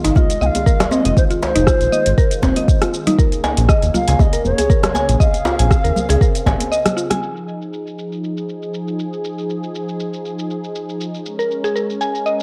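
The breathy bass bansuri floats a distant, unsteady bamboo melody with vibrato over this earthy, spiritual afro house excerpt, its line treated with cassette tape and analog delay. Beneath it a deep electronic kick sits up front alongside a round, dark analog bass warmed by tube saturation, while an afro-pop kit of metallic hi-hats, rim clicks and shaker is softened by low-pass filtering. Hand-played congas and a djembe sit in the background, giving the swung groove a warm, acoustic feel. A smooth, detuned analog pad holds sustained chords across the whole excerpt, and a woody, mallet-like FM synth pluck spins mellow arpeggios through chorus and delay, both pumping with sidechain and carrying a cassette tape color. The harmony moves between Fm7 and Bbm7, and at 7.2 s the kick, bass, djembe and bansuri have dropped away, leaving the pad, the filtered kit and a brief return of the pluck at 11.4 s in a lightly reverberant, home-recorded cassette sound.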